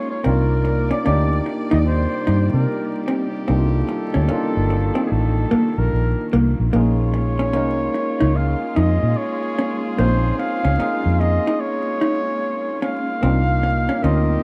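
A round, punchy electric bass sits up front in this sultry, soulful neo-soul and R&B excerpt, its dark, foam-muted tone entering at 0.3 seconds and carrying the low end as the groove swings on the sixteenths. Over it, a flugelhorn plays the melody with light vibrato and scooped notes, sounding distant and roomy in a jazz style, while a clean, compressed hollow-body guitar picks out a second line beneath. A barky, overdriven tine electric piano, gritty through a combo amp, fills in the accompaniment as the harmony moves from Cm9 to Bbm9 and back. In the background, a lush bowed string section holds sustained chords, and a horn section with a smooth top adds pop-style stabs from 1.9 seconds. The excerpt has the rough feel of a home demo, with light reverb, small room ambience and vinyl crackle.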